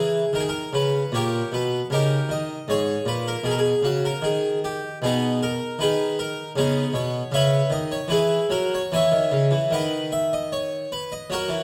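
A brilliant, up-front French-style harpsichord with three sets of strings plays alone throughout this serene, radiant baroque-style suite movement in 3/4 at 77 BPM with a rubato feel, moving from G# minor to B major at 7.3 s, its plucked tone captured by close, detailed microphones within a moderate recital hall reverb in a passage cut from a longer piece.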